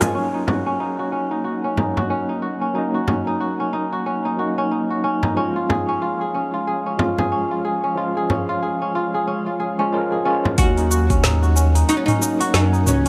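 A swung 4/4 downtempo groove opens with a brief band accent, then a close, dry frame drum struck with hard hands carries the pulse under a mellow, ringing kora playing arpeggios and a gritty, overdriven tine electric piano with fast tremolo and tape echo, while an ethereal pad with slow attack sits in the background over Ebm7 and Db chords, both keys and pad under a filter sweep. At 10.6 seconds the mystical, organic piece moves into its second section as an afro-pop kit with woody snare and metallic hats takes over from the frame drum, a deep, overdriven electronic kick enters briefly, a smooth, saturated synth bass comes up front, and a bright, woody oud picks out a plectrum-plucked melody with tape echo.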